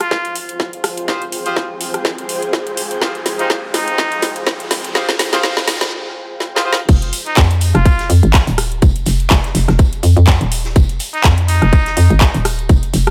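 Bass house at 124 BPM in F minor with a swaggering, bouncy swing, this cut builds over a tight, up-front electronic kick and a garage drum kit with woody snare, metallic hats, handclaps and rim clicks, while a close-miked, nasal muted trumpet plays breathy jazz-style fragments through digital delay and a clear horn section stabs on an Fmadd9 chord. A cloudy, detuned granular pad pumps underneath and a background riser climbs from 0.9 to 5.9 seconds before a brief break. The drop hits at 6.9 seconds, where a hollow, knocking FM bass with overdrive enters, joined by a soft-mallet acoustic kit with tambourine set far back in a hall.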